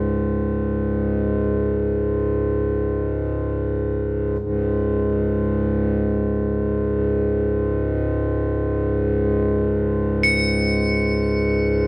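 A dark production sits in a wet echo chamber with a long 2.4-second decay, giving this short cut from a longer meditative world piece a spacious, haunting air. It moves in free time, with the whole passage forming a single section. A pedal harmonium holds a reedy, breathing drone, sitting up front and low in the range from C#2 to G#2, with a warm tone that carries the music from the start. At 10.2 seconds, crotales enter on a single high C#7, their bell-like, ringing tone smooth and lightly shadowed. A shimmer reverb on the crotales adds a glistening halo above the harmonium until the passage ends at 11.9 seconds.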